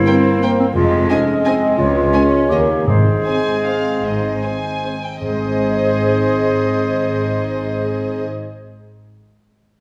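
Classical music, festive and elegant in triple metre with a rubato feel that slows early on. Sul tasto violins carry the melody with light vibrato, while a darker violin line, an airy, straight-toned flute and a soft-attacked clarinet add second lines over a mellow bassoon, intimate violas, vintage-toned French horn chords and ringing, fingerpicked harp arpeggios. Cellos and double basses enter at 0.8 seconds with a floating bass, round soft-mallet timpani join at 2.9 seconds, and a moderate scoring-stage reverb surrounds this short excerpt.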